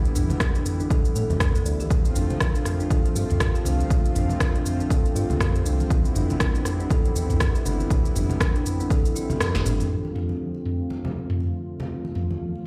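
Swung sixteenths at 120 BPM drive this hypnotic afro house excerpt in D dorian, with a punchy, up-front electronic kick and a deep house kit of rim click, shaker, snare and toms over soft-handed congas sitting distant in the background. A round, dark analog bass and a woody, ringing kalimba with digital delay pump against the sidechain beneath a smooth, detuned vintage pad with subtle chorus, moving from Em7 through Dm7 to Cmaj9. At 9.4 s the kick drops out for a band accent and drum fill, and from 9.9 s a filter sweeps the pad over a return to Dm7, all set in a large, reverberant room.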